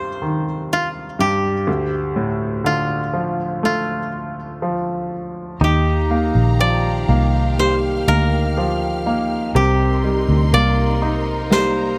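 A dry, woody koto carries the melody of this heartbroken, melancholic pop ballad over a brilliant, polished grand piano; at 5.6 seconds a round, punchy, foam-muted electric bass, a compressed, clean electric guitar playing arpeggios and a distant, lush string section holding sustained chords join in, before a short snare drum fill at 11.5 seconds sounds in the background, all within light reverb and a small room ambience.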